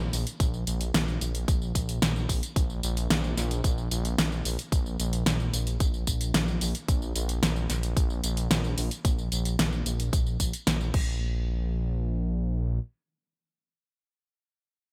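Synthwave at 111 BPM in a straight 4/4, dreamy and uplifting, cut from a longer piece with a bright 1980s-style digital sheen and light reverb. A dark, rumbling detuned saw bass sits up front on a low Bb, saturated and beating with sidechain pumping, while a pop drum kit with a fat snare, crash, hi-hat and tambourine carries gated reverb and a punchy electronic kick joins at 0.4 seconds. The drums drop out at 11.0 seconds, just before the piece shifts into a new section at 11.2 seconds, leaving the bass to sustain until 12.8 seconds.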